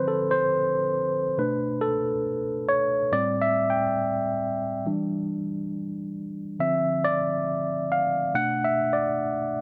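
Late-night and smooth, this short R&B passage is a solo tine electric piano, worn, clean and slightly out of tune as if heard through built-in speakers, sitting up front in light digital reverb as it drifts with a gentle sixteenth-note swing through Dm7, Bm7, Am7 and Em7 chords across its 9.6 seconds.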